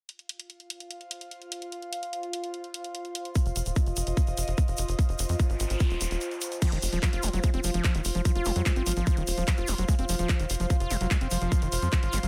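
A straight 4/4 psychedelic trance groove at 147 BPM opens with a garage drum kit's crash, handclaps and hi-hat under an alien, breathy pad fading in with chorus and phaser, joined at 0.7 seconds by a ring-modulated drone of moving overtones, both pumping against the sidechain. At 3.4 seconds a tight, up-front electronic kick drum and a grainy tube shaker arrive, and from 3.5 seconds a punchy sawtooth sequencer bass with a plucked filter drives the music forward. After an electronic noise sweep and a short break, a squelchy, gritty acid bass riff enters at 6.6 seconds, distorted, tape-coloured and delayed, pushing this dry, intense section of a longer piece.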